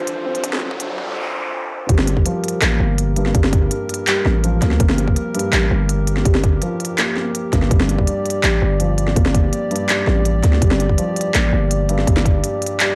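A half-time drum and bass groove drives this tense, cinematic excerpt, which opens with a brief build-up of electronic riser and noise sweep while a filter sweeps over a soft, felt-muted upright piano playing arpeggios with audible action noise and tape echo. Through the build-up and on into the drop at 1.9 s, a tight, layered electronic kick sits beneath an overdriven kit of woody snare, crisp hi-hat and handclaps, up front beside a growling, buzzy 808-style bass, while a deep, nasal analog pad holds sustained chords with chorus and sidechain pumping. The sound is dry and gritty, with transformer saturation giving the hardware recording its bite.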